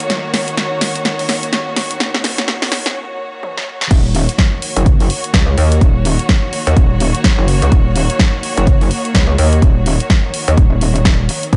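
Swaggering and gritty, this bass house excerpt at 126 BPM in Eb minor opens on a clear, lush studio string section holding sustained Ebm7 chords with vibrato and sidechain pumping alongside a punchy, up-front house drum kit of crash, hi-hat, snare and toms building through fills and a brief break, until the drop at 3.9 seconds brings in a tape-warm electronic kick re-recorded in a large room and an aggressive, metallic wobble bass, saturated with chorus, overdrive and pumping.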